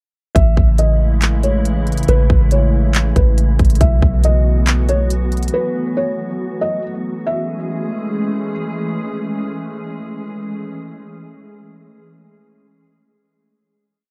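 A sparse half-time trap beat with a hard-clipped kick, handclaps and crisp hats broken by fast hi-hat rolls sits up front in this dreamy, floating piece of atmospheric cloud-rap. Beneath it, a soft, round 808-style bass plays long, decaying sub-bass notes that follow the kick. A glassy FM pad with a slow attack and long release holds sustained chords, moving from Amaj7 to B7sus4, softened by ensemble chorus, built-in reverb and sidechain pumping. Over the top, a felt-muted upright piano with thick felt, short sustain and audible action noise repeats a sparse melody like a sampled loop, dulled by a low-pass filter and colored by tape echo. The drums and bass stop at 5.5 seconds, and from 7.3 seconds a final Amaj7 chord lingers in the pad until it ends at 10.6 seconds. The production is dark and warm, with little room sound.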